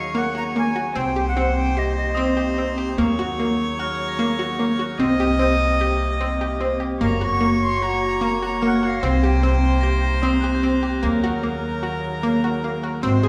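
Contemporary chamber music in an uneven 5/4 at 149 BPM, hopeful and playful, set in a hall-like reverberant space, with a chorused analog pluck sitting up front, spinning bright, detuned sawtooth arpeggios over a woody pizzicato upright bass. A reedy, airy jazz flute carries the melody in two short phrases, the second arriving at 7.0 seconds, while a clear, earthy bowed viola holds a second line beneath it. Far back in the mix, a mellow woodwind section sustains soft chords with light vibrato, and shimmering, bell-like crotales ring high until 11.5 seconds over chords moving among Ebm7, Cm7 and Gbmaj7.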